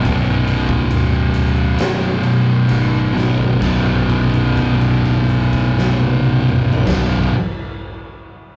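Stoner and doom metal at a heavy, sludgy crawl of 63-71 BPM, this short excerpt opens on a B minor riff that slows over its first 3.6 seconds, as two thick fuzz guitars grind out the part, one distorted and up front, the other dark and very quiet beneath it. An oversized, low-tuned acoustic drum kit with a punchy kick, fat snare and dark cymbals rumbles through a gritty stone-room sound and caps the slowdown with a fill from 3.1 to 3.6 seconds. The music then settles onto a B5 held until 6.9 seconds, with a round, overdriven picked bass, present from the opening moments, still underneath and the whole rough rehearsal-room take carrying saturated grit and moderate reverb.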